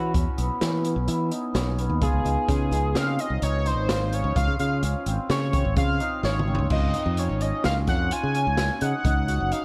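Intricate and driving, this progressive instrumental excerpt moves at 128 BPM in a straight 5/4 in Db major, with a bold, retro octave-doubled sawtooth lead carrying the melody through chorus, phaser and tape echo over hammered, shimmering cimbalom arpeggios and a bright, punchy fingered electric bass. An open jazz drum kit with dark cymbals and a boomy kick drives the groove, with an analog synth lead solo running until 6.7 s, as a drum fill from 6.2 s hands off to a new section over an Ebm11/Ab chord. The mix is dreamy and soaked in plate reverb.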